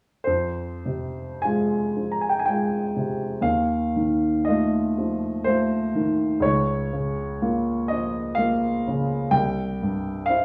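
In a triple metre with a freely breathing rubato, this romantic classical nocturne for solo grand piano unfolds in a wistful, mournful mood, the piano entering at 0.2 s and playing through to 10.4 s. The instrument sounds polished and present, placed up front, while the recording carries a worn, warbling cassette-tape quality and warbly pitch drift. A stone-room reverb and small-room ambience surround it, and the passage is cut from a longer piece.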